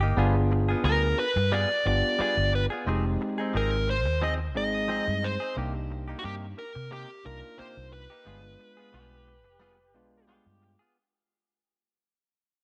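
A lightly swung 4/4 pulse at 89 BPM carries this soulful, mournful blues fragment over G7b9, Fm7 and Cm7, where a round, foam-muted fingered bass sits up front, a twangy direct-recorded clean guitar jabs stabs through slapback echo, and a barky, gritty tine electric piano fills in chords while a dark, smooth overdriven lead guitar sings the melody from 0.9 seconds, joined near the close at 8.9 seconds by a very quiet lo-fi guitar through a small old amp, all in light reverb and fading out throughout.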